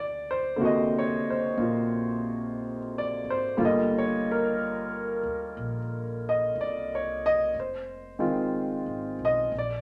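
A small, wet room surrounds this short cut from a tender, romantic jazz ballad, moving at a slow 61 BPM in 4/4 with a gentle swing on the eighths. A warm concert grand piano sits up front as accompaniment, intimate and natural, with deep bass and its action noise audible. A woody, thumpy pizzicato upright bass with steel strings lies far lower in the mix, while the harmony moves from D7alt to Gm7 at 3.6 seconds and Fm7 at 7.5 seconds.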